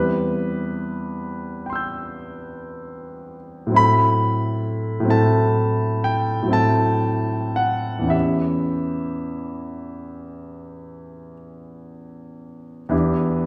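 Wistful and mysterious, this brief excerpt from a longer work is an impressionist classical piece for solo piano, moving in 9/8 with a free, rubato feel. A clear concert grand carries the music alone from the start to 13.5 seconds, ranging from deep bass notes up into its upper register. The instrument sounds natural and up front, with a long sustain letting each chord ring into the next. The harmony drifts from Cmaj7/E through Am6 and Em6 before settling on Em7 at 12.9 seconds, lending the passage a hazy, unresolved colour. A generous scoring-stage reverb places the listener further back in the room, wrapping the piano in a soft halo of space.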